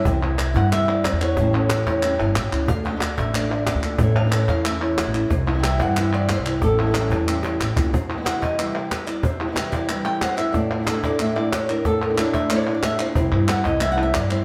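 A fiery, passionate flamenco piece at 183 BPM in 4/4, led by a fingerpicked acoustic guitar carrying the melody with a warm tone and audible finger squeak. A second, darker flamenco guitar, also fingerpicked, plays stabs beneath it over a progression that moves through C, A7, Dm and A. Close up front, a pizzicato upright bass with a woody, steel-string sound anchors the low end until 7.9 seconds. A softly played cajon with faint snares, along with crisp palmas hand claps, drives the rhythm throughout. After a short drum fill, a nylon-string guitar solo begins at 7.9 seconds over Cmaj7 and Asus4, and the bass returns at 13.2 seconds. The band sounds like it is playing live together in a reverberant stone room, and this is cut from a longer piece.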